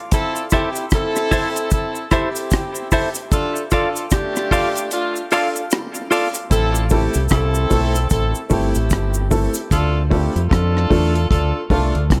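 Meditative and heavy, this slow 75 BPM dub reggae passage in A minor, cut from a longer piece, sets a warm, punchy horn section in dub echo over a dry, dark drum kit of hi-hat, rim click and tight kick, with a close cabasa, a clean picked electric guitar in spring reverb and echo through 6.3 seconds, then a round, punchy fingered bass from 6.5 seconds and a worn, woody, slightly detuned upright piano stabbing through echo from 6.9 seconds, all moving between Am and Dm.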